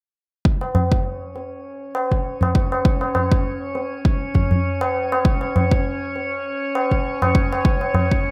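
An overdriven electronic kick drum, deep and layered and sitting up front with the sound of a large room around it, anchors this warm, hypnotic stretch of organic downtempo at 100 BPM in 4/4 with a light swing on the sixteenths. Close beside it, a low-tuned acoustic tabla with a short ring joins at 0.6 seconds. Behind them, from 1.0 seconds, a calm, glassy sine texture of drifting overtones floats quietly with slow attacks and long releases, softened by chorus and shimmer reverb, all within a bright 1980s-style digital production and a moderate plate reverb.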